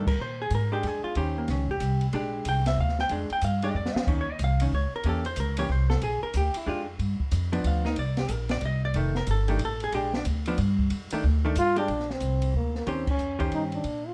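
A mellow, close-miked trombone takes the solo melody only at 11.6 seconds, its light vibrato sitting up front in this short swinging, sophisticated jazz waltz cut from a longer piece. It plays at a brisk 184 BPM in 3/4 with a swung eighth-note feel, centred in B-flat mixolydian. From the start, a clean, compressed hollow-body electric guitar carries the accompaniment with dark, picked chords, moving through rich harmonies such as Bb6, Eb13 and F9. Underneath, a woody pizzicato upright bass with steel strings sits up front. An acoustic drum kit recorded in a small room adds smooth, shadowy cymbals, a high-tuned snare and a punchy kick, with a brief fill at 3.8 seconds and a band accent at 13.0 seconds. Light reverb and a dark, warm production give the small-group swing and bop its sound.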